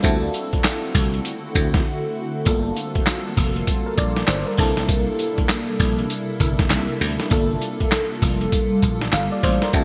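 Punchy and up front, the boom bap sampler-style drum kit anchors this slick new jack swing excerpt, its gritty, pitched-down sound built from a thumpy kick, medium-tuned snare, handclaps, hi-hat and tambourine with a compressed, tape-warm character. Set at 99 BPM in 4/4 with a 62% swing on the 16ths, the groove sits in G dorian and moves from D7 to Gm7 at 2.5 seconds, then C13 at 4.6 seconds and back to Gm7 at 7.3 seconds, with a brief break between 1.9 and 2.5 seconds. A dry thumbed slap bass adds a growly, foam-muted electric tone low in the mix's register. An FM electric piano with a soft pad layer supplies dreamy, detuned accompaniment treated with chorus and phaser, while a shimmering ambient pad holds dark, ethereal sustained chords with an octave-up shimmer, its own chorus, phaser and built-in reverb. The whole is glossy, bright 1980s-style digital production bathed in a moderately lush hall reverb.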